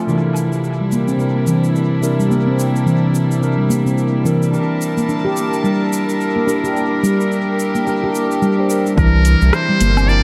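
Organic downtempo at 108 BPM with a 16th-note swing, earthy and meditative. Rich bowed chamber strings and a bright, clean tine electric piano with phaser and tape echo pump under the sidechain, while a mellow, ringing handpan plays arpeggios through a filter sweep and analog delay. Tape-warm deep house percussion with metallic hats, rim click, cabasa and woodblock sits low, and a glassy, drifting harmonics texture hovers in the background from 0.9 s. At 9.0 s a buzzy, metal-muted jazz trumpet with scooped notes, a round, up-front analog bass and a single deep electronic kick arrive, all within an echo-heavy spring-reverb space.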